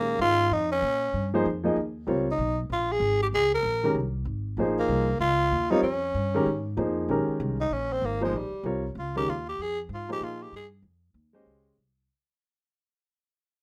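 A growling, breathy tenor saxophone, a warm baby grand piano and a woody pizzicato upright bass open together on a Bbm9 chord in this cool, searching modal jazz at 192 BPM, swung in 4/4 in Bb dorian. The raspy, up-front saxophone takes a solo from 7.1 s as the music fades out, dropping away at 10.7 s while the piano and bass carry on. A moderate small-room reverb and a rough home-demo mix frame this short piece, cut from a longer one.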